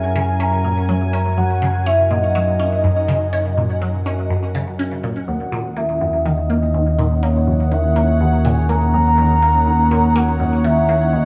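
A dreamy mix soaked in plate reverb, with a small-room ambience, frames this mysterious, hypnotic passage of ambient, sequencer-driven space music, cut from a longer piece, at 123 BPM in a straight 4/4 in Eb phrygian. Up front, a soft, round, octave-layered synth lead carries the melody with vibrato, chorus, tremolo, a cassette-tape character and analog delay, while a warbling, vintage analog drone holds the bass, thickened by chorus and tube saturation. A juicy, squelchy blip pluck runs a resonant riff through phaser and delay. Meanwhile a bright, sweeping pad sustains chords with slow filter swells, and a dark, pulsing gated texture sits in the background. Both the pad and the texture fade in across the full 11.2 seconds, as the harmony moves from Gb to Ebm7 at 5.3 seconds.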